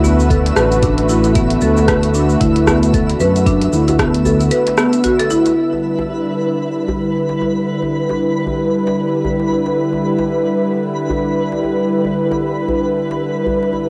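Hypnotic and warm, this organic downtempo excerpt in E minor moves at 114 BPM with a swung sixteenth-note feel, shifting from Bm7 to Em7 at 5.6 seconds. A detuned, warbling analog pad with chorus and sidechain pumping holds sustained chords up front, alongside a twinkling granular texture with octave-up shimmer. Beneath them, a woody padauk marimba plays arpeggios through analog delay, a smooth gliding synth bass with tube saturation carries the low end, and an electronic kick joins a tape-softened deep house kit of cabasa, hi-hat and rim click. Tight, cracking djembe under soft hands runs throughout, while the marimba, bass, kit and kick drop away by about 5.5 seconds, leaving the cassette-grained pad and texture and the djembe in a wet small room.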